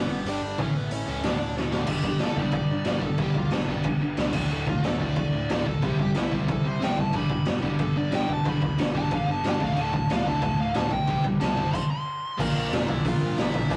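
The raw garage drum kit sits up front with a boomy kick, gritty saturation and a rolled-off top, driving this rowdy, upbeat punk rock clip that opens at half time before a drum fill at 1.6 seconds. A dark, smooth lead guitar with overdrive and tape echo takes a solo from 1.9 seconds, backed in the background by a biting guitar, a crunchy guitar and a growly, punchy overdriven bass. The band halts at 11.7 seconds before resuming on a Bb chord, all in a rough rehearsal-room sound with stone room reverb and vinyl crackle.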